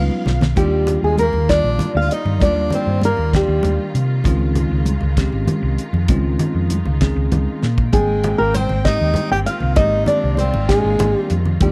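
In a straight 6/8, this soaring, bright jazz fusion piece sets a damped 70s drum kit with fat snare and tight kick and a dark, round hollow-body fingered bass up front, with thick-skinned congas in the background, bell-like tine electric piano and a rich, smooth bowed string section beneath a dark, thumb-plucked flamenco guitar melody with audible finger squeak and a breathy, close-miked tenor saxophone second line, both of which fall silent at 4.0 s and return at 7.9 s, all in a dry, close 1970s-style studio sound.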